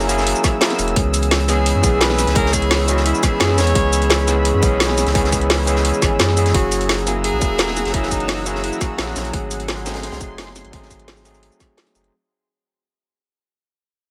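Melancholic and lush, this liquid drum and bass excerpt moves at 172 BPM in a straight 4/4, tuned slightly low to A4 = 437 Hz, and sits in a drop that begins to fade out at 6.5 seconds. An up-front overdriven tine electric piano plays gritty, bright accompaniment through a combo amp with delay, over a deep, round sine sub bass and a thick, detuned sawtooth unison pad whose slow-attack chords hover in the background with chorus. The drums stack a tight electronic kick, a produced kit with a woody snare, metallic hats and cabasa, and a dark, crunchy breakbeat kit with a high-tuned snare and rolled-off top, filtered and tucked behind. A breathy, whispered tenor saxophone enters at 1.5 seconds with light vibrato and tape echo, close-miked and intimate in a pop style. The harmony drifts through F#9, C#m7 and G#7b9, all set in light reverb and studio ambience.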